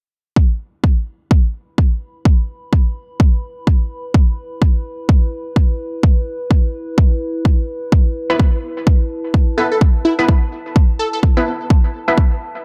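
Aggressive and gritty, this bass house excerpt opens on a punchy, overdriven electronic kick, joined at 2.6 seconds by a warbling, lo-fi pad with chorus and sidechain pumping that fades in, then bold orchestra-hit-like sawtooth stabs with tape echo arrive at 8.3 seconds before a catchy, detuned plucky unison lead enters at 9.6 seconds, all set in a dark, dry mix.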